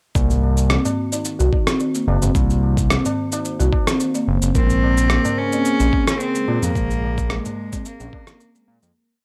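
A soft-mallet marimba opens this mystical, meditative organic downtempo piece in Bb minor at 109 BPM, its woody, mellow arpeggios run through a low-pass filter sweep and tape echo, joined almost at once by a smooth, saturated synth bass riff, a thumpy overdriven kick, a gritty shaker and rim click, low-tuned ringing tabla, and a warbling, nostalgic pad that arrives at 1.0 seconds. At 4.5 seconds, as the chords move from Cm7b5 to Bbm9, a rich, reedy bowed cello enters up front with arching motif-based phrases in tape echo, while a pure quartz singing bowl holds a high note in the background. The dry, gritty hardware sound sits in studio reverb, and the whole piece fades out from 6.0 seconds to its close at 9.0.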